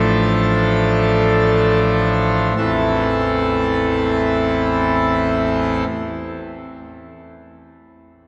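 Classical chorale-style music for solo pipe organ, this short cut from a longer piece unfolds in free time in A minor with a solemn, dark mood. The full organ speaks with mixtures and a baroque voicing, its brilliant, majestic tone carrying a touch of chiff and sitting up front. It spans A1 to A4, opening on a Dm/A chord and slowing down through the first 2.6 seconds before settling onto A minor. The organ stops at 5.8 seconds, and the cathedral's reverb, with a 4.7-second decay, lingers in the space until the close at 8.3 seconds.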